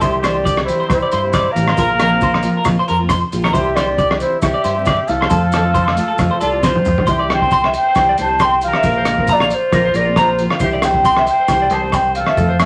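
A baroque flute carries the melody in a pure, wooden voice with vibrato and tongued notes, floating over a carefree highlife guitar band groove with a gentle swing on the sixteenths. Beneath it, a clear trumpet with vintage, jazz-style vibrato plays a second line, while a clean semi-hollow electric guitar spins high arpeggios through a tremolo effect. A bright, full-bodied steel-string acoustic guitar plays picked accompaniment in the background, fresh strings and the odd finger squeak audible, and a growly, punchy fingered electric bass anchors the low end. The cloth-damped drum kit sounds muffled and gritty, with a fat snare, tight kick, rim clicks, hi-hat and toms, and grainy maracas sit faintly behind it all. Vinyl crackle, a faint mains hum and a wet studio reverb give the cut from a longer piece a lo-fi glow, and a drum fill at 6.6 seconds leads into the second section at 7.1 seconds.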